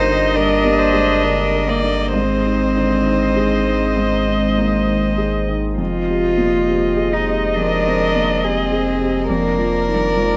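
Neoclassical piano and strings in a reflective, melancholic mood, moving in a rubato 4/4 through a short passage cut from a longer piece. A close, airy-bowed violin carries the melody over a floating sul tasto cello line, while a woody, boxy upright piano with audible action noise and a distant, vibrato-touched viola fill in the accompaniment, above a very quiet detuned sawtooth pad with chorus and a clean sine sub bass. The parts sit in a lush hall reverb within a rough home-demo mix, as the harmony passes from Ebmaj7/G through Ab and Fm7 to Bb/F.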